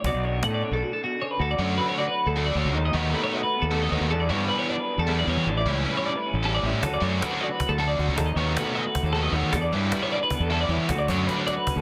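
Math rock and midwest emo in a brisk 7/8 at 310 BPM counted in eighths, this intricate, wistful passage sits in D major and is cut from a longer piece. A bright, twangy twelve-string electric guitar spins clean picked arpeggios through lush chorus and plate reverb, while a dark, lo-fi electric guitar through a small old amp adds slightly broken-up accompaniment beneath it. An up-front fuzz bass, fingered and round with overdrive, anchors the low end throughout. A double-tracked overdriven guitar enters with a biting riff at 1.6 seconds, and a snappy, dry cajon struck with hard hands appears briefly at the start, then returns at 6.8 seconds and closes with a fill. The harmony moves through seventh chords such as Bm7, Dmaj7, B7/D#, Em7 and A7, all in a dense, heavily limited modern master with moderate studio ambience.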